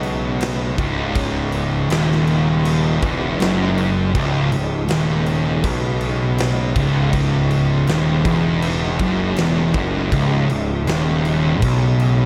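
Heavy and brooding, this stoner and doom metal excerpt moves at a straight 80 BPM in 4/4, sitting in C# minor on a single C#m chord for its 12.3 seconds. Two thick, fuzz-distorted electric guitars play a picked riff low in their range, set in the background, one with a warm tone and the other darker. Underneath, a picked electric bass brings a bright, growly edge, pushed through overdrive and tube saturation while keeping a direct, amped character. A big rock drum kit, acoustic and natural in a large room, drives the piece with a punchy kick, a medium-tuned snare and bright crash cymbals. Very quiet behind it all, a percussive tonewheel organ holds mellow, round, dark, clean chords with third harmonic percussion, chorus vibrato and a slow rotary speaker. Light reverb places the parts together in a shared space.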